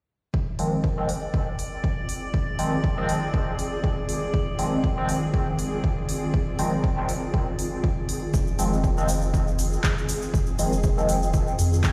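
Dub techno at 120 BPM in F dorian, hypnotic and deep, where a punchy up-front kick and a deep house kit with smooth hats and handclaps drive a juicy, warbling resonant polysynth of stabs with chorus, phaser and dub echo, over a cloudy granular pad and a drifting glassy texture, all set in a stone room on a big sound system, until a round sine sub bass and a grainy tube shaker join at 8.3 s.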